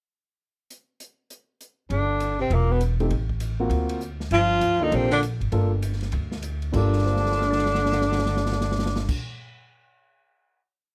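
Small-group swing and bop jazz with a smoky, moody feel, this short, complete piece opens with a pickup bar on an open acoustic drum kit with dark cymbals and a boomy kick. At 1.9 s a breathy, vibrato-laden tenor saxophone states a bebop-style theme, doubled an octave below by a clear baritone saxophone over a woody pizzicato upright bass in a two-feel, and a concert grand piano with deep bass joins with syncopated rootless comping at 3.0 s, before a drum fill carries the final chord from 6.9 s, all heard in a lightly reverberant, closely miked and detailed sound.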